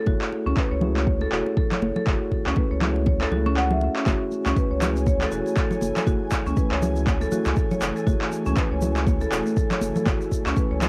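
Driving and warm, this afro house excerpt at 120 BPM in F# minor swings over an F#m9 chord: marimba arpeggios pulse with sidechain pumping and analog delay, a mellow, worn, slightly out-of-tune electric piano adds stabs in the background, and a round, dark analog bass joins a deep, up-front electronic kick on cassette tape, dry congas and overdriven handclaps; the kick drops out at 3.6 seconds, a grainy egg shaker enters at 4.1 seconds, and an ethereal, warbling pad with ensemble chorus and reverb sits behind everything from 4.9 seconds, all with the character of a home cassette recording.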